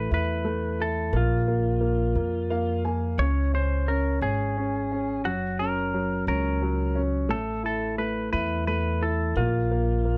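Twangy, bright lap steel guitar carries the tender, swaying melody of this slow pop excerpt in 6/8 at 58 BPM, its clean slide tone sitting up front. A clear concert grand piano with deep bass supplies open accompaniment and a brief fill from 2.2 to 3.2 seconds, while a woody pizzicato upright bass anchors the low end. Light reverb adds a soft space, and the passage is cut from a longer piece.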